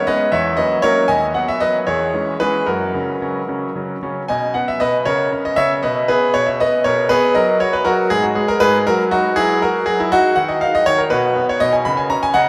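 In a 6/8 at 79 dotted-quarter beats per minute, this classical-period piano sonatina moves with a free rubato, graceful and elegant in mood. A bright concert grand piano plays solo throughout the 12.5 seconds, ranging from D#2 up to B5, its polished tone sitting up front with a deep bass. The piano is bathed in a wet cathedral reverb with a 6.7-second decay, so each phrase rings out in a vast, echoing space. In B major and tuned to A4 = 441 Hz, the opening passage moves through F#7/E, B/D#, C#m/E and F# before a new section begins at 4.3 seconds on B. That second section colours the harmony with C#m69, Bmaj13 and F#13, broken by unharmonised moments, and it stops at 12.5 seconds on C#13sus4, cut from a longer piece.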